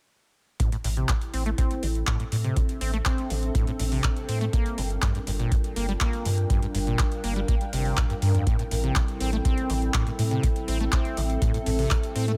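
Set in a digital ambience, this driving, raw acid house excerpt at 122 BPM in A phrygian pairs an up-front deep electronic kick and tape-warm analog drum-machine handclaps with metallic hi-hats, a squelchy, resonant sawtooth acid bass riff with overdrive and tape echo, a round sine sub bass and a moody, detuned analog pad holding sustained chords over Am7 and Gm7, with the sub bass and both pads carrying sidechain pumping and a blurred granular cloud pad with built-in reverb entering at 2.0 s.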